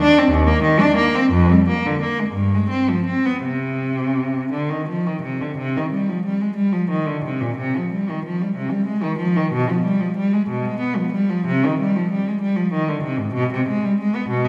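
Heard from further back in a recital hall, the recording is bathed in a wet, lingering reverb that surrounds a single bowed cello placed up front. This short cut from a longer baroque-style suite movement for unaccompanied cello has a grave yet flowing mood, moving in 6/8 with free rubato. The player draws a rich, expressive tone with vibrato, soft attacks and portamento, ranging from Eb2 up to D4, and the music shifts into a new section at 5.6 seconds.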